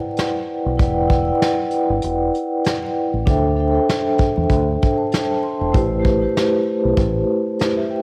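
A lightly swung boom-bap hip-hop groove at 97 BPM in E minor rolls along on a soft brush drum kit, its punchy kick, medium-tuned snare, rim click and hi-hat sitting up front with a natural acoustic feel, while a deep, round dub bass played with the fingers joins at 0.7 seconds with tube-saturated grit. Over it, a mellow vibraphone struck with soft mallets rings with a metallic shimmer and slow motor vibrato, filtered and tape-worn as it carries the Em7, D7sus4 and Am7 changes. The dark, tough mood is framed by small-room ambience, light reverb, cassette tape and vinyl crackle, giving this short cut from a longer piece a homemade, dusty character.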